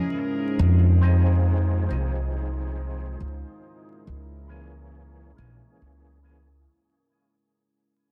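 A woody, pizzicato upright bass sits up front from 0.6 s in this cinematic, melancholic trip hop excerpt at 69 BPM with a light swing on the 16ths, moving between Fm7 and Dbm6. Beneath it, a deep, dark sawtooth-and-sine ambient pad with a sub octave holds slow-attack chords through chorus and its own reverb. A lightly overdriven, percussive tonewheel organ enters at 1.0 s, coloured by chorus vibrato, a stopped rotary speaker, tremolo, lo-fi 12-bit sampler grit and tape echo under a filter sweep, all in a dense, heavily limited mix with vinyl crackle that fades out throughout.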